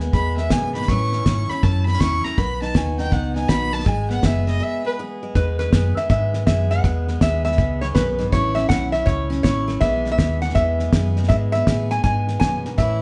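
Honky-tonk and classic country with a down-home, heartfelt mood, this swung excerpt opens on a fiddle solo, its bowed tone rich and smooth with light vibrato. Beneath it, a bright, full-bodied steel-string acoustic guitar picks the chords while a dark, round, foam-muted electric bass holds the low end and a cloth-damped drum kit thuds along on hi-hat, tight kick and a fat snare with a rolled-off top. After a short break that starts at 4.6 seconds, a lap resonator guitar takes the melody at 5.4 seconds, played with slide and fingerpicks and sitting up front with a metallic, nasal bite. The band is heard from further back in the room, with moderate studio reverb and a softened, dulled high end that suits the vintage feel.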